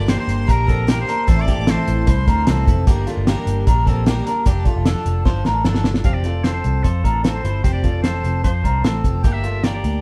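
This jangly indie pop excerpt moves at a brisk 151 BPM in a straight 4/4, with a wistful, restless mood over chords that shift between G minor, A minor, D minor and F. A bright oboe with light vibrato carries the melody in a present, classical style, joined at first by a soft-attacked, sul tasto violin section sitting intimately in the background. Both drop out at 2.6 seconds, and the oboe returns at 6.0 seconds for the closing passage. Underneath, a shimmering, octave-doubled twelve-string acoustic guitar supplies picked accompaniment, while an electric guitar through a small old amp plays slightly broken-up, lo-fi arpeggios. A dark, round, foam-muted electric bass and a cloth-damped, thuddy drum kit with a fat snare, tight kick and rolled-off top sit up front, and a drum fill at 5.3 seconds leads into the second section. The band sounds as if it is playing live in one room, with moderate studio reverb.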